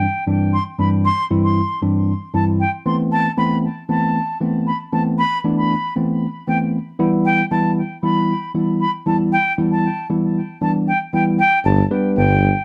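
A reedy, airy concert flute with delay carries a summery, euphoric dance-pop melody over a clean, up-front tine electric piano at 116 BPM in straight 4/4, moving through Cadd9/G, Amadd9 and Em before a close-miked tuba with light vibrato enters at 11.7 seconds on a G chord, set in a dark, warm production with moderate studio reverb in this short cut from a longer piece.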